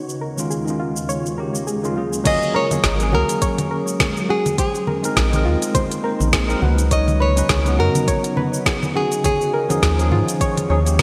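A deep, nasal analog bass sits up front in this relaxed sunset chillout excerpt, entering at 2.8 s to anchor a smooth groove at 103 BPM in 4/4 with a gentle 16th-note swing. Above it, an electronic R&B kit with a woody snare, smooth hi-hats, shaker, congas and crash cymbal carries gated reverb and a tape-warm character. A soft electronic kick joins it at 2.3 s. An ethereal, shimmering ambient pad holds sustained chords in the background, colored by chorus and phaser, while a soft, round pluck plays dark arpeggios through chorus and delay. A clean tine electric piano supplies accompaniment with delay, and a fingerpicked classical nylon-string guitar carries the melody from 2.3 s to 10.4 s. The harmony moves through suspended ninth chords in G# dorian, all set in a lush hall reverb with a bright 1980s-style digital production.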